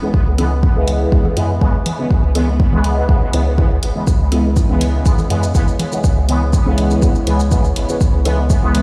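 Dub techno with a deep, hazy mood, cut from a longer piece, where an up-front electronic kick anchors a clean sine sub bass with tube saturation, the bass breathing with sidechain pumping over a single C#m7 chord. A juicy, detuned sawtooth polysynth fires resonant filter-swept stabs soaked in chorus, phaser and dub echo, while tape-softened hi-hat and shaker and background bongos and congas with their own dub echo fill out the groove. At 5.4 seconds a dark, moody ambient pad drifts in behind with a slow attack and built-in reverb, and the whole mix carries the stony air of a big sound system in a bare room.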